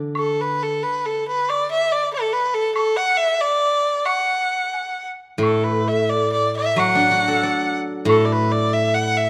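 Chinese traditional music for a small chamber ensemble, this festive and graceful passage moves in a free, rubato 2/4 at roughly 87-95 BPM in a D gong mode and is cut from a longer piece. A single bowed erhu carries the melody from 0.2 seconds onward, sitting up front with a clear, biting, earthy tone colored by light vibrato and portamento. The steel-string zither, played with fingerpicks, supplies accompaniment in a ringing, silvery voice, sounding briefly at the very start and returning at 5.4 seconds to play through to the close. A woodblock sits in the background, its small-room sound carrying dark cymbal colors as it plays from 0.2 until 8.2 seconds. A moderate recital hall reverb surrounds the ensemble.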